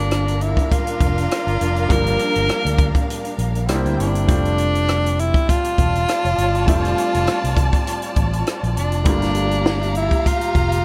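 Set in a small, natural-sounding room, this bittersweet, smooth 1970s-style soul piece at 101 BPM in G dorian, cut from a longer piece, features a breathy, up-front tenor saxophone singing the melody with vibrato and scooped jazz-style notes over a distant, lush bowed string section that adds an expressive second line with portamento, a clear, intimate baby grand piano with audible action noise and long sustain, a dark, round fingered electric bass, and a compact cocktail drum kit with a punchy kick, high-tuned snare, rim click and hi-hat entering at 0.1 seconds, all moving from Gm7 through C7 and F6 back to Gm7.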